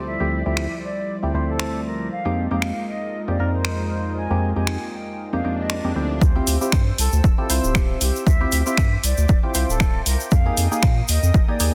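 Dense, heavily limited and lightly reverberant, this moody deep house excerpt in D minor at 117 BPM opens with an airy, distant concert flute melody with dub echo, a smooth detuned sawtooth pad and hollow, wave-folded organ stabs pumping under the sidechain, joined at 0.6 seconds by an overdriven drum machine of finger snaps and hi-hat, before an electronic swell at 5.3 seconds gives way at 6.2 seconds to a drop where a round, deep bass, an up-front punchy overdriven kick and a grainy tube shaker arrive.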